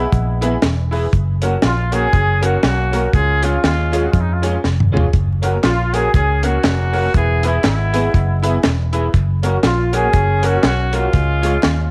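Ska at 120 BPM in 4/4 with a swung eighth-note feel, this joyful, bouncy passage in F# major is cut from a longer piece and moves through E, F# and C# chords. A clear, vintage-styled horn section carries the melody up front with light vibrato, while a foam-muted, round electric bass sits forward beneath it. A deep reggae drum kit, dry and dark with a high-tuned snare and tight kick, plays hi-hat, kick, snare and toms, and a drum fill lands at 4.6 seconds. An electric guitar through a small old amp adds twangy, slightly broken-up accompaniment with analog chorus in the background, and an upright piano contributes woody stabs. From 5.6 seconds a very quiet, crisp group handclap joins, all set in light reverb and studio ambience over a bed of vinyl crackle.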